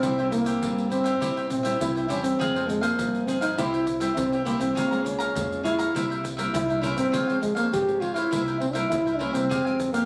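From the first beat of this short cut from a longer piece, a breathy trombone carries a nostalgic, yearning samba-choro melody up front. Its mellow, jazz-style line has scooped notes and a smooth top, set in plate reverb. The whole band plays together at 101 BPM in a straight 4/4. A crisp, picked cavaquinho and a full-bodied, fingerpicked nylon-string guitar in classical style share the accompaniment. Beneath them sit a woody pizzicato upright bass with steel strings and a tube shaker, pandeiro and deep surdo played with soft hands in a small room. The harmony moves from C through Fm, Bbm7/Db, C7 and Dbmaj7 before settling on Fmadd9, and the phone recording catches moderate studio ambience with compression.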